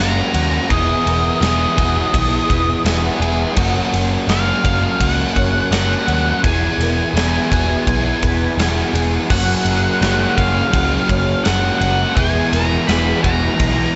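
A straight 84 BPM pulse in 4/4 drives this blissful, dreamy shoegaze and dream pop fragment in F# major, cut from a longer piece. It drifts between F#maj7 and Emaj7 or E as a huge arena drum kit enters at 0.3 s with bright cymbals, a punchy kick and a medium-tuned snare, alongside a round, foam-muted vintage bass. A biting overdriven guitar riff sits up front while a dark octave-fuzz lead sings a melody through tape echo, a boxy, shimmering twelve-string acoustic arpeggiates very quietly underneath, and a crunchy overdriven guitar with reverse reverb joins in the background at 9.3 s, all in a light, small-room space.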